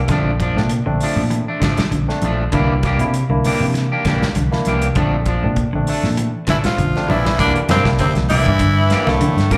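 Heard as a live club gig through the venue's PA, this short cut from a longer afrobeat piece has light club reverb and a small-room ambience. The groove is joyful and driving, with a gentle sixteenth-note swing over chords that alternate between Bbmaj7 and C9. A round, dark fingered bass anchors the band beneath a soul drum kit with a punchy kick, medium-tuned snare and rolled-off top, while bright, hard-handed congas sit back in the mix. A barky tine electric piano, lightly overdriven through a combo amp with slapback echo, supplies accompaniment, as a very quiet clean guitar plays fingered arpeggios and a twangy, slightly broken-up guitar adds picked stabs with its own slapback. At 6.5 seconds a raspy, gritty tenor saxophone steps up front with the melody, using vibrato and scooped notes, while a tight, brilliant trombone section plays a second line in the background. A drum fill from 6.8 to 7.4 seconds leads into the next section.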